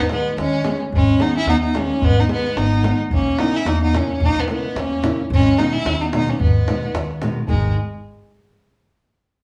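A rich, focused violin leads up front in this restless, virtuosic excerpt of Balkan wedding-band folk, its bowed melody sung with vibrato between G#3 and E4. Behind it, a soft-attacked clarinet plays a classical-style second line in the background, while a small, woody nylon-string guitar is fingerpicked on old strings. Pizzicato upright bass on gut strings adds a dark, thumpy low end from 0.4 seconds, and a tight, close davul keeps the percussion in the background. The tune moves at 110 BPM in 2/4 with a light swing on the sixteenths, in G# minor tuned to A4 = 436 Hz, shifting from G#m to A#dim at 3.1 seconds before returning to G#m. The band sounds like it is playing live in one room, with studio ambience and a wet reverb.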